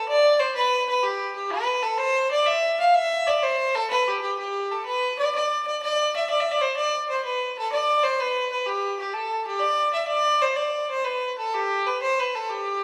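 A lone bowed fiddle opens this rollicking, lively fragment of Celtic folk, cut from a longer piece and running 12.8 seconds. The metre is 12/8, played with a straight feel, and the single player carries the whole tune between G4 and F5. The fiddle's tone is rich and earthy, sitting up front yet carrying a distant quality. A wet stone room reverb of about 1.3 seconds rings around each phrase, giving the sense of a band playing live together in one space. The instrument is tuned with A4 at 445 Hz.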